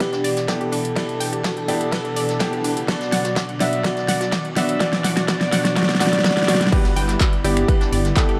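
In straight 4/4 time, this expansive, uplifting progressive house build-up is driven by a punchy, overdriven electronic kick and a big-room dance kit with a huge snare, metallic hats, crash, finger snaps and handclaps, with a background brush kit adding ride and snare, beneath a smooth, expressive sawtooth lead with vibrato, a detuned analog pad, lush unison pluck arpeggios and bright, worn baby grand piano stabs with 12-bit grit, the lead, pad, pluck and piano all pumping to the sidechain, while a very quiet riser from 2.8 s leads into the drop at 6.7 s, where a gentle FM bell line and a deep, rumbling detuned saw bass join, everything set in a moderate, lush hall reverb with a dark, warm production.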